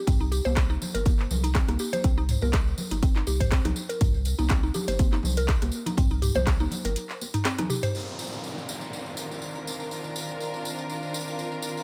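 A punchy, up-front electronic kick drives this afro house groove at 122 BPM in 4/4 with a light 16th-note swing, joined by an afro-pop kit of handclaps, metallic hats, rim click and toms, ringing high-tuned congas, and a jingly tambourine that carries on to 11.8 s. In C minor, a woody, mallet-like FM synth pluck spins arpeggios through chorus, phaser and dub echo over a round, deep sine sub bass, both pumping against the kick, creating an earthy, spiritual mood in a dry sound. After a break at 7.0 s and a drum fill, an intimate bowed string section enters at 7.9 s with soft, vibrato-laden Cm11 chords beside an electronic downlifter in this excerpt cut from a longer piece.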